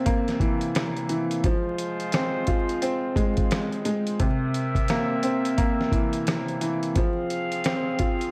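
A swung boom-bap hip-hop groove at 87 BPM in 4/4 rolls from a dusty, sampler-style drum kit entering at 0.1 seconds, with a thumpy kick, fat snare, rim clicks and hi-hat sitting gritty, compressed and up front, re-recorded in a large room. A woody, vintage upright piano carries the accompaniment through a dark F harmonic minor vamp moving between C7 and Fm, filtered and run through cassette tape. From 1.4 seconds a horn section adds smooth-topped stabs with light vibrato and tape echo, set lower in the mix, while transformer saturation and vinyl crackle give this excerpt a dry, gritty hardware feel.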